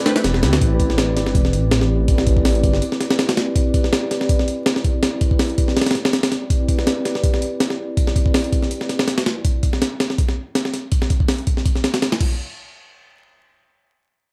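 This excerpt has a dry, gritty hardware character with a layer of vinyl crackle over a digital ambience, giving the dark, nostalgic jungle and drum and bass at 163 BPM a worn, lo-fi surface. A sampler-style breakbeat kit sits up front, compressed and re-recorded in a large room, with a thumpy kick, a medium-tuned snare, hi-hat and crash cymbal, swung slightly on the 16ths in 4/4. A detuned saw bass in A minor joins at 0.2 seconds, thick, beating and menacing, its saturated sawtooth tone blended with sine weight and a fast attack, sustaining low between E1 and D2. The bass drops out at 2.8 seconds, leaving the drums to carry the passage alone until they stop at 12.3 seconds. A brief new section begins at 12.4 seconds as the fragment, cut from a longer piece, comes to a close.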